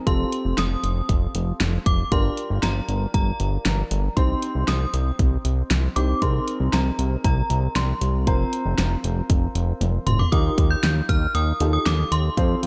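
A straight 4/4 groove at 117 BPM drives this nocturnal synth-pop fragment, with a punchy, layered electronic drum kit and fat snare up front beside a thick, detuned sawtooth analog bass with a filter sweep, while a present, warm baby grand piano plays accompaniment and a ringing, warbling vintage FM synth chime carries the melody through ensemble chorus, phaser and digital delay, and a drum fill at 9.8 seconds leads into a new section at 10.3 seconds within a dark production touched by light reverb.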